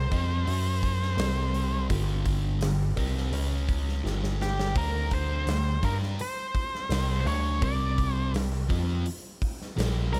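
A double-tracked, sludgy overdriven guitar sits up front, picking a dark riff in this raunchy, swaggering blues rock and southern rock cut taken from a longer piece. A picked octave-fuzz lead guitar carries the melody above it, while a bell-like, clean tine electric piano holds down the bass line. An up-front acoustic drum kit with a punchy kick and a medium-tuned snare comes in at 0.1 s and breaks into a fill at 4.0 s, all set in a small room.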